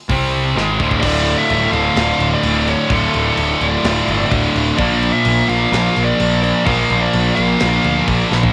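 Cut from a longer heavy metal piece in D minor at 128 BPM, this heavy, relentless passage opens with an up-front, bright high-gain guitar and a scooped high-gain guitar riffing over a punchy, fuzzy overdriven picked bass and a tight acoustic drum kit with a tape-tinged, medium-tuned snare, which plays a fill before the feel drops to half time at 1.0 s, when a dark, cassette-colored high-gain lead guitar melody and a very quiet, double-tracked distorted guitar riff join, the harmony moving from Dm to Bb at 4.8 s in a dry, home-made cassette recording.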